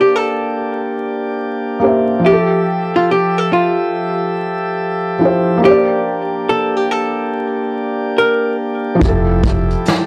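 This mellow, nostalgic lo-fi hip hop excerpt opens with a clean, hollow-body archtop guitar carrying a compressed, picked melody up front. Beneath it sit a felt-muted upright piano, soft and intimate with audible action noise and a cassette-tape haze, and a pipe organ whose bright flute stops hold light, baroque-voiced chords. All three are filtered dark, and the harmony moves between Bb69 and Fmaj9 at a relaxed 71 BPM in 4/4 with a swung 16th-note feel. The guitar falls away at 8.6 seconds, and at 9.0 seconds a thumpy, gut-strung upright bass with tube saturation and a vintage brush kit, featuring a punchy kick and rolled-off top, join briefly. The whole recording has a dry, gritty character with vinyl crackle and a moderate studio reverb.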